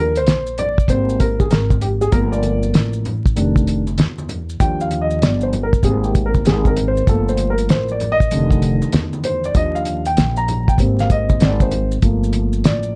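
A dark, mellow concert grand piano leads this nocturnal jazz-hop excerpt, playing a solo through the full 13 seconds over lush extended chords like Abmaj9, Gm9 and F13, its short sustain and deep bass bathed in plate reverb, while a woody pizzicato upright bass with steel strings sits up front beside it. From 0.2 seconds a cloth-damped, thuddy drum kit enters with hi-hat, a fat snare and a tight kick, its rolled-off top roughened by vintage 12-bit sampler grit and set to a swung groove. Ringing, band-limited maracas and congas sit in the background, and the whole mix carries a dark, warm production with vinyl crackle.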